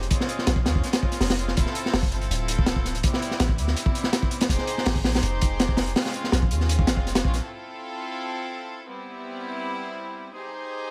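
A straight 4/4 drum and bass groove at 164 BPM drives this atmospheric, raw jungle excerpt, carried by a crunchy breakbeat kit of hi-hat, tight kick and high-tuned snare that sits up front with a gritty, saturated character and a rolled-off top. Beneath it, a long sustained 808-style bass with a deep, sine-like tone, fast attack and decaying tail runs from D1 to Eb2, its sound thickened by tube saturation. A rich chamber string section holds sustained, bowed chords between G3 and C5, its reedy gut-string timbre giving a period-style ensemble colour above the low end. The harmony moves through minor ninth chords such as Bbm9, Dm9, Am9 and Fm9 before shifting to major sevenths over other bass notes, Fmaj7/C, Cmaj7/G and G#maj7/D#. At 7.4 seconds the drums and bass stop, leaving the strings alone until 10.9 seconds, all within a light reverb that suggests a small room.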